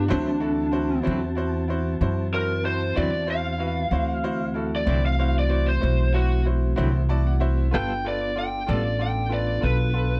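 The sound is dry and close, a small room captured in the manner of a 1970s studio, in this brief cut from a longer slow blues at 63 BPM in a straight 12/8 feel that comes across soulful and swaggering. Up front, a picked electric lead guitar through a small cranked amp carries the melody with an overdriven, lo-fi grit, while a pizzicato upright bass with steel strings sits prominently underneath, growly and thumpy. A soft, flute-like tonewheel organ holds sustained chords colored by chorus vibrato, key click and a slow rotary speaker, and a bright concert grand piano with a brilliant, natural tone adds accompaniment and a fill from 6.8 s. A direct-recorded clean electric guitar, picked and compressed with tremolo, supports the harmony until 8.9 s. The progression opens on D9 and moves to G9 at 7.7 s.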